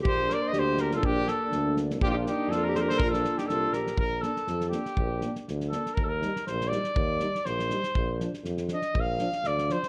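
Festive and wild, this Balkan brass band piece opens in Bb major at 121 BPM in a swung 2/4, with a clear alto saxophone second line, a dark euphonium with a smooth top and a soft-attack French horn in the background, and a roomy, distant tuba bass all sounding from the start. A trumpet with light vibrato carries the melody up front over a loose acoustic drum kit with a punchy kick and fat snare, and once the saxophone drops out at 4.0 seconds the trumpet takes a solo through to 9.9 seconds as the harmony moves from Bbmaj13 through Bb and Eb. Moderate recital hall reverb gives the warm production a classical-style polish.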